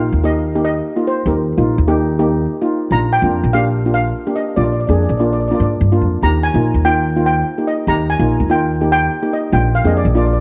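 A gently swung 16th-note groove at 145 BPM in 4/4 drives this sunny, carefree calypso excerpt in Eb major, where a shimmering, metallic double-seconds steel pan played with medium rubber sticks carries the melody over a mellow, soft second pan using soft rubber sticks for accompaniment, both boxy and up front, while a woody, thumpy pizzicato upright bass on steel strings anchors the Eb and Bb changes, the whole mix set in a moderate plate reverb.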